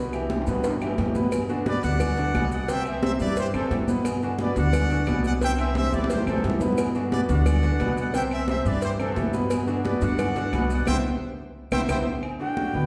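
Driven by a straight 4/4 salsa groove, this sunny, festive clip cut from a longer piece moves briskly as the harmony rocks between Cmaj7 and Gmaj7. A thumpy, woody pizzicato upright bass sits up front beside a brilliant grand piano with long sustain, both playing from the first moment to the end. Behind them a busy percussion bed of ringing high-tuned congas, tight cowbell, metal-shelled agogo bells and timbales, dry claves and grainy, saturated maracas carries drum fills around 0.3, 5.4 and 11.2 seconds, and the band hits a shared accent near the close. A tight trumpet section with light vibrato and a soft attack takes the melody from 1.7 seconds, and a breathy, reedy concert flute with a crisp attack appears up front only in the final moments. The whole ensemble sits in a wet recital hall reverb that gives it the bloom of a church or concert hall.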